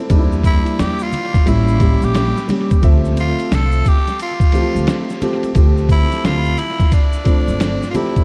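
A growling, breathy tenor saxophone carries the melody from 0.5 seconds over a mellow, cool jazz-hop groove at 88 BPM in D minor, joined by a dark, long-sustaining concert grand piano, a woody pizzicato upright bass, an up-front, muffled sampler-style drum kit with a thumpy kick, and close maracas and congas in the background, with tape echo on the sax, piano and hand percussion as the harmony moves through Em7b5, A7b9 and Dm9 amid vinyl crackle and small room ambience in this short cut from a longer piece.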